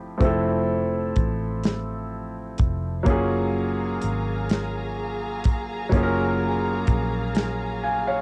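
A slow, straight six-eight sway carries this tender R&B excerpt, where a dry, dark soul drum kit with a tight kick and rolled-off top sits up front beside a polished, long-sustaining grand piano, both tinted by cassette tape, while a round, foam-muted electric bass hums low beneath a move from Fmaj9 to F#maj9 as a woody, bowed string section with vibrato enters at 3.1 s under a light reverb that gives the whole home-cassette recording a soft, intimate glow.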